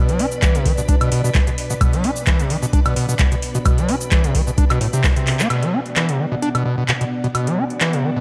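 Awash in light digital ambience, this driving, hypnotic acid house excerpt sets a squelchy, gritty overdriven acid bass riff up front over lush sustained Bm chords from a pumping, chorused string machine, with a booming, tape-warm analog drum machine of metallic hats, handclaps and woodblock, a deep electronic kick that enters at 0.4 seconds and stops at 5.1, and grainy cabasa until a drum fill and band accent around 5.4 seconds open the final stretch.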